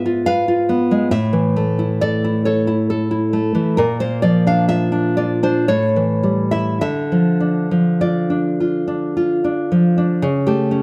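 Set in a rubato three-beat metre, this brief, melancholic and wistful fragment of a romantic piece for solo classical guitar features a full-bodied, up-front nylon-string guitar, fingerpicked with deep classical tone in light reverb, moving from G#m6 through A, Bb and A7 to settle on Dm at 6.8 seconds before turning to A/C# at 10.3 seconds.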